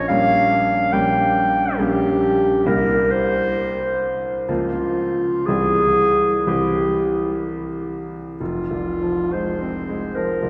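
A mellow, soft-edged clarinet sings the melody over a warm concert grand piano with deep, smooth bass, the two opening together in a yearning, solemn romantic duo in F minor. The music moves in a rubato 3/4 at roughly 59-75 BPM, with harmony passing through C7 and Db6 before settling on F minor as a new passage begins at 8.4 seconds. A long cathedral reverb surrounds this short extract from a longer piece, lending the clarinet a distant, roomy glow while both instruments stay up front.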